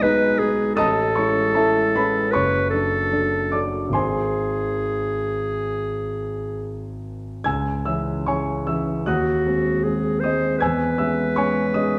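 A bright, present clarinet sings the melody up front in a classical style, its solo line staying within F#4 to B#4 across the full 12.0 seconds. Beside it, a concert grand piano supplies accompaniment from F#1 to G#6, its deep bass giving the duo a solid footing. This romantic chamber music is solemn and yearning, moving at 66-80 BPM in 4/4 with a rubato feel, and it is tuned to A4 = 441 Hz. The harmony passes from G#m/B through Amaj7, D/F# and G#, then settles toward C#m and closes on C#m/E. A recital hall's reverb, lasting about 1.5 seconds, wraps the pair in a dark, warm production, and the passage is cut from a longer piece.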